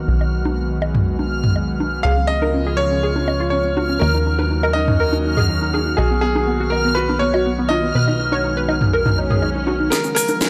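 A lush hall reverb wraps this bittersweet, expansive progressive house passage, where an airy, breathy pad with chorus holds sustained chords over a punchy, funky analog bass, dry electronic bongos, congas and toms, and a bright, reversed granular texture shimmering high above. At 2.0 seconds an intimate grand piano with audible action noise takes the melody through tape echo, joined by gentle, detuned, wave-folded pluck arpeggios. An electronic swell sounds at 9.2 seconds before a house drum kit with a cracking snare and metallic hats arrives at 9.9 seconds for a fill, alongside a grainy, close tube shaker.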